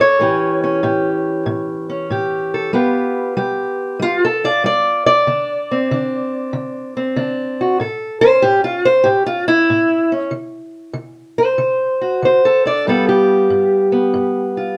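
A swung-eighth groove at 95 BPM in 4/4 drives this gritty, swaggering acoustic country blues excerpt, where a lone fingerpicked steel-string parlour guitar, dark and boxy and placed up front in a moderate studio reverb, works through A7, G7 and D7 changes before the second section begins at 10.3 seconds.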